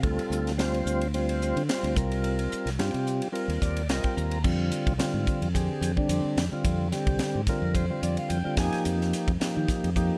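A smooth tonewheel organ with key click and a slow rotary speaker opens this nocturnal, driving electric jazz fusion excerpt at 109 BPM, over a growly, bright fingered electric bass and a crisp, polished drum kit with a high-tuned snare and punchy kick. The lightly swung 16th-note groove moves through minor seventh chords in C dorian before shifting to F dorian at 4.4 s, where an Fm69 harmony takes over. The up-front organ adds fills from 3.3 s and again from 7.2 s, and the dry, close sound keeps every detail clear.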